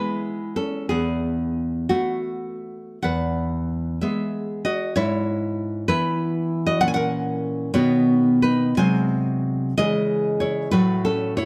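A romantic piece for solo classical guitar in E major, this short excerpt moves in a rubato 6/8 at roughly 50-66 BPM in dotted quarters, with a sunny, warm mood. The fingerpicked nylon-string guitar sits up front, full-bodied and deep, spanning E2 to G#5 as the harmony drifts from E through F#7/A# and B to G#7/B# and C#m before reaching F#m/A as the excerpt cuts off. Close, detailed microphones and light reverb give the instrument an intimate, present sound.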